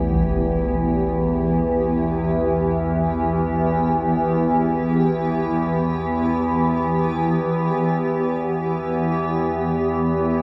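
In free time, this dark, ominous ambient drone in E minor, tuned to A4 = 439 Hz, sets an up-front drone sweeping resonant overtones under chorus and phaser against a cloudy, blurred granular pad holding sustained chords, while background bronze gamelan-type bossed gongs, struck with padded beaters, play mellow, beating arpeggios through a diffuse delay and fade out until stopping at 6.5 seconds, all inside a vast cathedral reverb of 5.7 seconds in what sounds cut from a longer piece.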